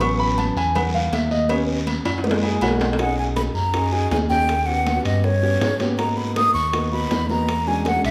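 A straight, brisk four-four groove drives this sunny, sophisticated Afro-Cuban jazz passage, cut from a longer piece. Ringing agogo bells and timbales join the percussion, while thick-skinned, high-tuned congas, tight cowbell and bongos, and a raspy, distant guiro sit further back in the mix. A smooth, dark synth bass with a fast attack, sustained notes and vibrato sits up front beneath a warm, intimate concert grand piano, whose audible action noise, deep low end and long sustain come through clearly. The piano carries a solo over chords that begin on A69, and a drum fill runs from 2.1 to 3.0 seconds. At 3.0 seconds a breathy concert flute enters up front with tongued, expressive lines, vibrato and lifted highs, as the harmony settles on B6 and moves toward G#m9 and E13. A wet, large studio reverb gives the impression of a band playing live in one room.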